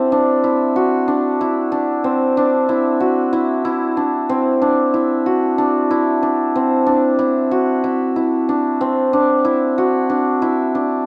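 A dark, warm production with a moderate stage reverb frames this pensive, restless contemporary chamber piece in 7/8 at 186 BPM (eighths), where a solo hammered dulcimer, shimmering and ringing up front, plays alone within a narrow middle range over a Cadd9 chord for the 11.1 seconds of this short cut from a longer work.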